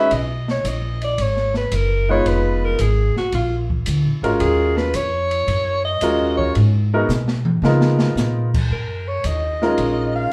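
A forceful, punchy alto saxophone solo with vibrato opens this cool, late-night small-group swing and bop excerpt in Eb minor at 112 BPM, backed by a natural grand piano and a woody, thumpy pizzicato upright bass on gut strings, while a dark, smooth drum kit with a boomy kick and a rolled-off top adds a fill from 7.1 to 8.2 seconds, all set in a wet club reverb heard from further back in the room.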